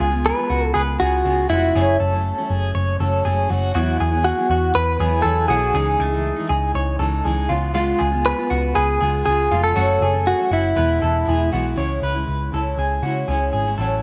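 A full-bodied jumbo acoustic guitar fingerpicks the accompaniment from the start of this bright, breezy indie pop piece in 4/4, alongside a slightly broken-up, lo-fi electric guitar playing arpeggios through tremolo and tape echo, and a dark, round, foam-muted electric bass sitting up front. At 0.3 s a clean, direct-recorded electric guitar enters with a compressed, picked melody that carries on until 11.5 s. The music then moves into a new section at 11.8 s, and the whole mix sits in a moderate spring reverb.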